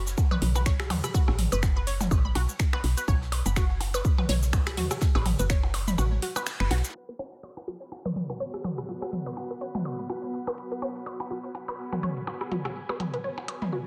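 A squelchy, phased blip pluck with dub echo runs through this cool, sparse minimal techno excerpt at 124 BPM, over a woody FM bass that pumps until 6.8 seconds, a punchy up-front electronic kick that stops at 5.6 seconds, a house kit of cabasa, finger snaps and metallic hats, a click kit of rim clicks, toms and blips with tape echo, a very quiet brushed kit, and a cloudy granular pad that drifts in at 8.3 seconds beneath a filter sweep in an echo-heavy mix.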